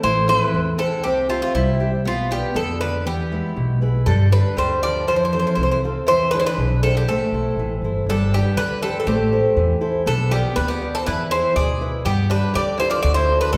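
Greek folk for a bouzouki band in A minor at 120 BPM in a straight 2/4, this tense, intense passage cut from a longer piece sets an up-front, metallic bouzouki melody over a second bouzouki line sitting in the background, both ringing with double and octave-doubled strings. A fingerpicked steel-string acoustic guitar adds warm accompaniment, while a woody, thumpy pizzicato upright bass on gut strings stays dark and prominent. All parts play throughout in the wet reverb of a recital hall, moving through Am, Bdim and E7 harmony before a new section at 8.1 seconds turns toward a closing D chord at 13.0 seconds.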